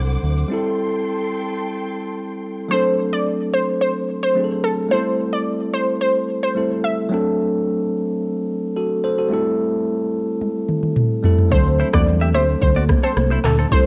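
A straight afrobeats groove in four flickers briefly at the start, then returns after a drum fill at 10.4 seconds, with the electronic kit's knocking kick up front among handclaps, rim clicks, shaker and toms, joined by a round, dark dub bass and soft-handed congas in the background. Over a hypnotic, smooth sway between D7 and Am7, a bell-like tine electric piano carries the accompaniment throughout, lush bowed strings hold chords only at the opening, and a detuned, wave-folded analog pluck with chorus sings the melody from 2.7 seconds. Near the close, a twangy, compressed clean electric guitar adds a picked riff through analog delay, and the whole home cassette recording sits in light digital ambience with tape coloring the keys, strings, drums, pluck and guitar.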